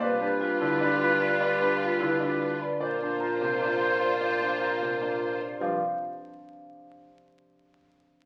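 Classical minimalist pattern music in 7/8, bright and hypnotic, in which a background piano carries the melody over a distant oboe second line, lush bowed strings holding sustained chords, metallic vibraphone arpeggios with slow motor vibrato, a mellow bassoon bass and a thumb-plucked Celtic harp accompaniment that rings on alone until 7.0 s, the fragment steeped in wet studio reverb and the crackle of a very old 78 rpm record.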